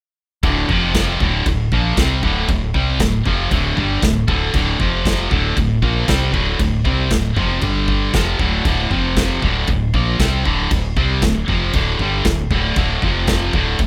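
A dry, rough home-demo mix carries this dark, relentless heavy metal fragment from a longer piece, where a bright, high-gain, double-tracked distorted guitar sits up front, churning power chords over a Dm center from 0.4 to 13.9 seconds, backed by a round, hollow-bodied fretless bass and a punchy acoustic rock kit with bright cymbals, crash, kick and snare.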